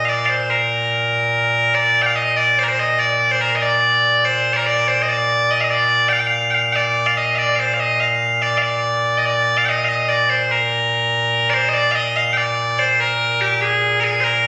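Piercing, bright solo bagpipes sound loud and up front from the first second in a stirring, proud Scottish traditional pipe tune in a straight 6/8, heard in a short excerpt cut from a longer piece. The single continuous line moves into a new strain at 11.7 seconds, carried through a wet recital-hall reverb in a phone recording made in the room.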